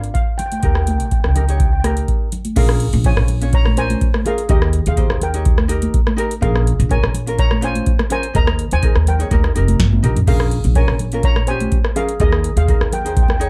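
This bouncy, sunny calypso excerpt opens at 125 BPM in a straight 4/4, with steel pan, ukulele, upright bass and a booming analog drum machine all sounding together from the start, joined by congas at 0.4 seconds. The steel pan, a double seconds played with medium rubber sticks, carries the melody with a metallic, shimmering tone set in a boxy small room. Beneath it, a light, fingerpicked acoustic ukulele adds bright accompaniment, while a pizzicato upright bass with steel strings gives a woody, thumpy low end and sits up in the mix alongside the drums. The drum machine has a deep kick, a tonal snare, metallic hats and a tape-warm character, re-recorded in a small room and placed up front, with crash, rim click and toms in play and a fill at 9.8 seconds. Close, dry congas with thick skins round out the percussion. After an opening turn on Bb and Eb7, the harmony settles into a Bbm7 to Eb sway, with suspended and added-ninth colours on the Eb, all in a dark, warm production with little reverb.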